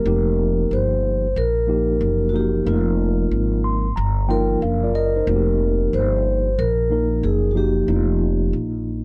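A growly, woody pizzicato upright bass sits up front with transformer saturation in this cool, nocturnal hip hop excerpt, moving at 92 BPM with a swung sixteenth feel over an F9sus4 harmony and tuned slightly below standard pitch. A mellow tine electric piano accompanies throughout and adds a fill from 3.3 to 5.3 seconds, while a ringing, metallic soft-mallet vibraphone carries the melody until 8.5 seconds. The sound is dry and gritty, with little reverb.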